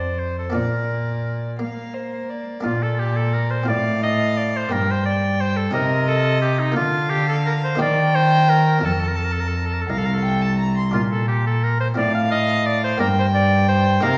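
Serene and flowing, this excerpt of a baroque-style sonata movement in 6/8 at 58 BPM in Bb major places a bright oboe melody with light vibrato up front over a warm, gut-string period violin second line, a nasal, reedy cello bass also set forward, and a muted, lute-like buff-stop harpsichord plucking its accompaniment in the background, heard from further back in a wet recital hall.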